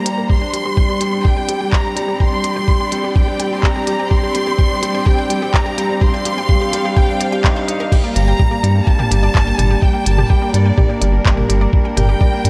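Piano and strings electronica in a straight 4/4, this excerpt from a longer piece feels melancholic and intimate, set in a light reverb. A felt-muted upright piano plays a soft, mellow riff with audible action noise, while a rich, focused violin section carries the melody with vibrato over sustained chords from a dark, woody string section. A minimal electronic kit with clicky hats, handclaps, toms and crash cymbal sits under high-pass filtering, joined by a muffled, thumpy kick that stays up front, and a very quiet, detuned analog pluck adds bright, chorused arpeggios. The opening build-up gives way to a drop at 7.9 seconds, where the chords move from Csus2/G to Gmadd9. At 8.2 seconds a round, deep analog bass arrives up front with sidechain pumping.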